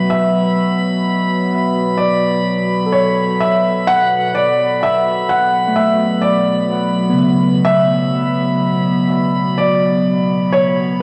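Serene and melancholic, this ambient piece in B minor at 63 BPM places a soft, felt-muted upright piano melody with audible action noise up front from 0.1 s, over a detuned, nostalgic tape-like pad holding sustained chords, bright tine electric piano arpeggios trailing diffuse delay, glassy sine overtones drifting high above, and a nasal analog drone in the background that fades out, the whole set in worn, warbling cassette tape and a wet concert-hall reverb.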